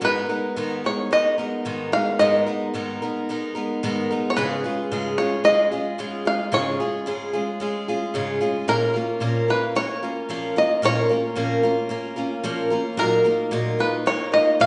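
Heard through the lingering reverb of a church or concert hall, with a dull top end, this short excerpt of melancholic, reflective folk moves at 111 BPM in G# dorian. A twangy, percussive bluegrass banjo, played with fingerpicks, carries the melody up front, its bright tone ringing across the room, while a warm picked steel-string acoustic guitar accompanies close by, with the odd finger squeak audible. Both play throughout the 14.7 seconds over a progression from G#madd9 through C#/G# and A#m to D#madd9/A#.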